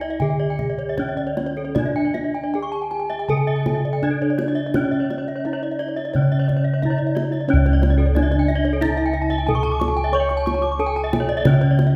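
Balinese gamelan in C# pelog, ceremonial and brilliant, moving in a straight 4/4 at 77-91 BPM in this short cut from a longer piece. A bronze metallophone carries the melody between C#4 and C#5, struck with a horn mallet for a bright, airy ring, its paired tuning producing shimmering beats. Two more bronze metallophones play arpeggios alongside it, one with a wooden mallet reaching from A4-40c to D6, the other horn-struck between C#5 and C#6, both shimmering with the same paired-tuning beats. Bossed gongs, played with padded beaters, anchor the bass from C#2 to C#5 and sit up front with a round, mellow, softly beating tone, while a tight kendang played with soft hands keeps the percussion going throughout. The ensemble sounds in a recital hall with a moderate 1.3-second reverb, and the music shifts from its opening section into a new one at 7.5 seconds.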